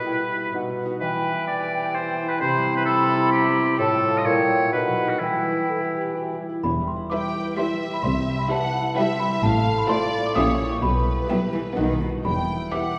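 A clear oboe and a ringing, fingerpicked concert harp open this quirky, sneaky, whimsical film cue in 3/4, joined almost at once by a dark, distant clarinet, an airy flute group and a vintage-toned bassoon, before a bell-like, close-miked celesta carries the melody from 6.6 s above rich, smooth cello and double bass sections, with rich violin sections and an expressive viola section with portamento entering at 7.1 s, all within a wet scoring-stage reverb heard from further back in the room.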